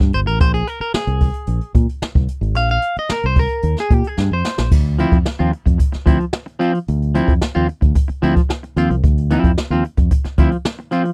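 A clean, bright semi-hollow electric guitar leads this short funk excerpt at 111 BPM, soloing over a Bb7sus2 chord until the music shifts to Dm9 at 4.7 seconds, following a brief drum fill. Underneath, a jazz kit played with brushes brings dark cymbals and a boomy kick, while a round, dark fingered bass holds the low end, stopping at 10.5 seconds. The dry, close 1970s-style studio sound puts every part up front, giving the groove a gritty, funky feel.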